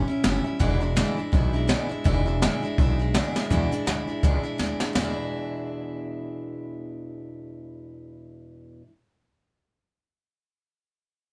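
Retro and upbeat, this short rockabilly excerpt swings at 166 BPM in E mixolydian, with a bright, full-bodied picked steel-string acoustic guitar up front, complete with finger squeak, over woody pizzicato upright bass and an airy jazz brush kit with a boomy kick that drops out at 5.1 seconds after fills at 3.3 and 4.6 seconds, all captured as a band playing live in one room with light reverb.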